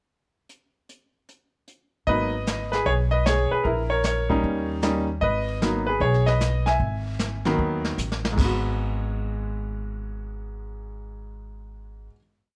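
A clear, vintage-toned grand piano with a short sustain leads this cool, moody swing jazz trio piece. It states a motif-based melody in sentence-like phrases, partly doubled in thirds, over syncopated comping in rootless voicings. Brushed drums open alone with a pickup bar, sweeping the snare under dark cymbals and a boomy kick, before the woody pizzicato upright bass enters with the piano at 2.1 seconds in a two-feel, and a drum fill at 8.0 seconds leads into the final chord, with light reverb around the trio.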